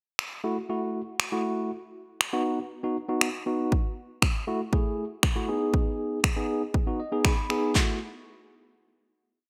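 A bright, 1980s-style digital sheen and a lush hall reverb frame this driving, confident dance-pop piece in F# dorian at 119 BPM, where an up-front, layered house drum kit with a punchy kick, finger snaps, handclaps and gated reverb pounds out a four-on-the-floor beat from 0.2 seconds while a clean tine electric piano, heard as if through built-in speakers and pumping with sidechain, plays syncopated, closely voiced chord stabs over F#m7, B, F#m7/A and G#m, adds a fill at 6.7 seconds and settles on a final F#m7 chord at 7.8 seconds.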